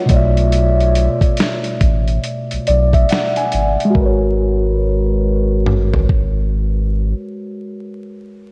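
Lo-fi hip hop at 70 BPM in 4/4 with a swung 16th feel, this melancholic, hazy excerpt from a longer piece sets muted, felt-like synth keys, dark and intimate under chorus, cassette tape color and a low-pass filter, over a deep, round dub sub bass. A gritty, compressed sampler-style kit of thumpy kick, medium-tuned snare, hi-hat and toms carries vintage 12-bit crunch, while the keys add a fill from 2.2 s before the harmony moves from Bm11 to G#m11 at 4.0 s. A lush hall reverb and vinyl crackle soak the dreamy mix, and the drums drop out at 6.3 s as the keys ring on.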